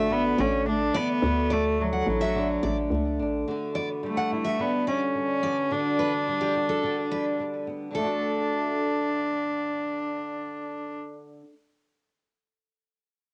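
A straight, even 4/4 pulse carries this easy-going, heartfelt stretch of acoustic pop, cut from a longer piece. A bowed solo cello sits up front with the melody, its tone rich and earthy with a light vibrato, while a double-tracked flamenco guitar, fingerpicked and close, plays the accompaniment. Above them, a jumbo steel-string acoustic guitar picks full-bodied arpeggios through an analog delay. A hollow, bouncy FM bass with a punchy, fast attack, decaying notes and a mellow tone anchors the opening before dropping out at 3.4 s, as the harmony shifts from D to Gmaj7/D and returns to D when a new section begins at 8.0 s. The steel-string guitar stops at 9.6 s, the cello carries on until 11.0 s, and the flamenco guitar rings on to the close at 11.5 s. Light reverb and the cassette grain on the cello and both guitars give the whole a homespun, intimate feel.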